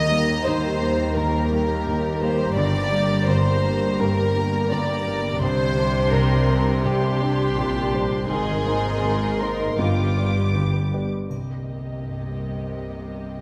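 Cinematic orchestral film score, bittersweet and sorrowful, moving with an unhurried rubato sway as a distant, woody violin section sings the melody high above a pure, floating second violin line up front, while intimate violas, a softly placed grand piano with audible action noise, a very quiet ringing harp in thumb-plucked arpeggios, and warm cellos with a dark, smooth-topped double bass section fill out the wet scoring-stage reverb, before a faint triangle glints in the background at 11.3 s as the harmony turns to Cm7.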